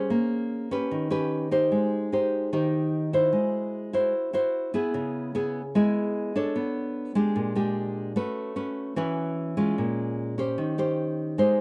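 A fingerpicked nylon-string guitar plays solo, up front and classical in tone, through this sunny, sophisticated bossa nova excerpt at 149 BPM in a straight 4/4, moving through rich harmony from Bbm9 and Ebaug7 to Abmaj7, Bm9 and A69, caught by close, detailed microphones with light reverb and tuned slightly high.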